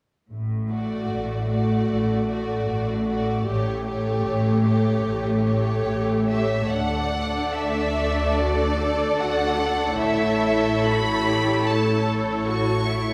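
A wet scoring-stage reverb sets this tender, lyrical slow romantic movement for string orchestra in D major further back in the room, where cellos and double basses open the bass at 0.3 seconds before a focused, lush violin melody, a close second violin line and smooth, even violas join at 0.7 seconds, all bowed with vibrato at a rubato 74 BPM in 4/4 within a passage cut from a longer piece.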